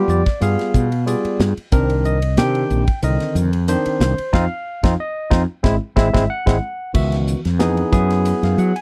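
At 92 BPM in 4/4, a light 54% swing on the sixteenths gives this intense, driving electric jazz fusion excerpt its forward push. A modern acoustic drum kit sits up front in a small room, with a tight kick, a medium-tuned snare, hi-hat, ride and crash. A fretless electric bass, played direct and amped, fills the low end with a warm tone. A bright, barky tine electric piano, clean through a combo amp, carries the chords, moving from G7b9 and Cm9 to F5 and Abaug7. From 4.3 seconds the whole band hits a run of accents, capped by a drum fill at 6.6 seconds, before the passage restarts at 6.9 seconds over C#m11 and F#9sus4. The recording is dry and close, with a 1970s studio character and little reverb.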